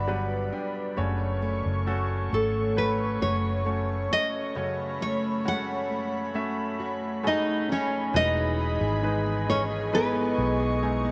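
A moderate plate reverb gives this short, hopeful pop ballad excerpt a soft, spacious glow at a slow 67 BPM in 4/4. An up-front, full-bodied nylon-string guitar carries the heartfelt melody over a clear grand piano with audible action noise, which opens with a fill from 0.0 to 1.0 seconds. A breathy, detuned pad with chorus holds sustained chords, a fingerpicked jumbo steel-string acoustic arpeggiates in the background, and a dark, round, foam-muted electric bass sits up front as the harmony moves from Gmaj7 and F#m to Emaj7 at 8.1 seconds.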